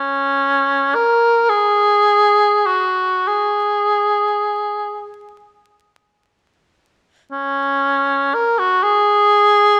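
Classical and serene, this brief, nostalgic excerpt features a clear cor anglais playing alone and up front, shaping an expressive line in a free, rubato 6/8 with light vibrato. Its voice sits in a modest middle register and blooms into a moderate scoring-stage reverb, while a vinyl crackle adds a sense of age. The opening phrase returns at 7.3 seconds before the cut at 9.8 seconds.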